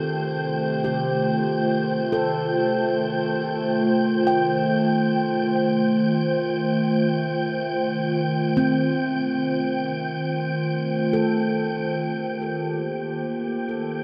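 Bathed in a huge, wet reverb, this serene and spacious ambient excerpt floats on a warbling, nostalgic tape-like pad that sits up front with chorus, its dark, detuned chords moving from F7 to Cm7 at 12.0 seconds. Around it, a mellow handpan rings out soft, meditative arpeggios through tape echo, while an airy, breathy wind-like noise texture hovers high above. Beneath them, a very quiet organ-like drone fades out and stops at 12.1 seconds.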